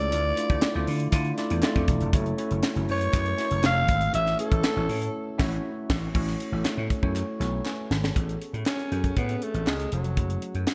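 A breathy, raspy alto saxophone leads this breezy, urban slice of polished 1980s jazz-funk pop. It carries the melody with vibrato and a touch of digital delay over a worn, slightly out-of-tune tine electric piano, lightly overdriven and bathed in lush chorus. An amped, growly slap bass sits up front with punch, while a tight, dry funk drum kit with a high-tuned snare and gated reverb drives the straight 120 BPM groove in 4/4 and A major. Very quiet, crisp group handclaps join at 0.6 seconds as the chords move from Dmadd9 through F#m7, F9 and A6 toward a band accent. The saxophone drops out at 5.4 seconds and returns at 8.7 seconds, after a drum fill, as the harmony settles onto Amaj13 and then F#m9. A moderate plate reverb and bright 1980s-style digital production give this short cut from a longer piece a glossy studio sheen.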